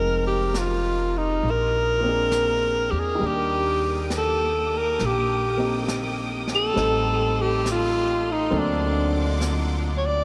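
Wistful and intimate, this reverb-soaked jazz ballad fragment sets a breathy, subtoned alto saxophone up front with digital delay, vibrato and scooped notes over a concert grand piano with audible action noise and long sustain, a woody pizzicato upright bass, and a background brush kit carrying vintage 12-bit sampler grit that enters at 0.5 s, while a distant, expressive bowed string section with portamento joins on sustained chords at 3.2 s.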